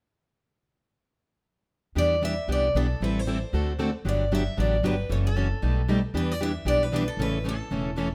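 At 2.0 s a boxy, bright parlour-style steel-string guitar picks the melody in the upper register, while a plugged-in concert guitar with audible finger squeak and a second fresh-stringed guitar further back pick the accompaniment, all over a woody, thumpy pizzicato upright bass. This fiery yet bittersweet jazz manouche swings at 230 BPM in E minor, moving through Em7, Am7, D7, Gmaj9, F#m7 and Baug7 before a new section returns to Em7 at 6.1 s and lands on A. Light reverb gives the acoustic string band a close, lively space in this short cut from a longer piece.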